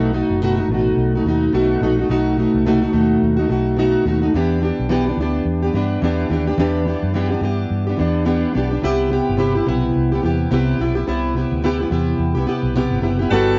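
Hazy and mellow, this bedroom-pop take on indie pop moves with a relaxed swing, cut from a longer piece. A fingerpicked, plugged-in steel-string acoustic guitar sits up front with a full-bodied, jumbo tone and fresh strings, colored by lush chorus, a warbly pitch drift and cassette-tape grit. Beneath it, a vintage muted electric bass played with the fingers gives a dark, round, foam-muted foundation. The harmony drifts from B7 to Em7 at 4.3 seconds and then to Cmaj7 at 8.8 seconds. At 13.3 seconds a chamber organ with sparkling flute stops appears for sustained chords, light and chiffy, also touched by cassette tape. The whole sits in a moderate studio reverb with the soft, dulled top end of a home cassette recording.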